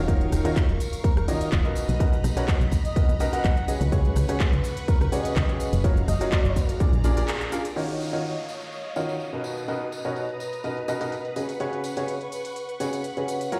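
Heard through a big sound system in a bare room with a large studio reverb, this soulful, bittersweet piano house cut at 125 BPM sets a clear, woody upright piano riff up front, with audible action noise and a tape echo, over shimmering, vintage string-machine violin chords, all pumping with the sidechain. A punchy electronic kick and a round, dark FM bass drive the groove alongside crisp, filtered house-kit handclaps, hi-hat, rim click and shaker and a distant tambourine, while a veiled trumpet in a bucket mute sings a jazzy melody with vibrato from 1.0 s. The kick and bass drop out just before a brief break and band accent at 7.3 s, after which filter sweeps move over the drums and strings and an electronic downlifter falls through the remaining chords of Ebm9, Bmaj7 and Db7sus4.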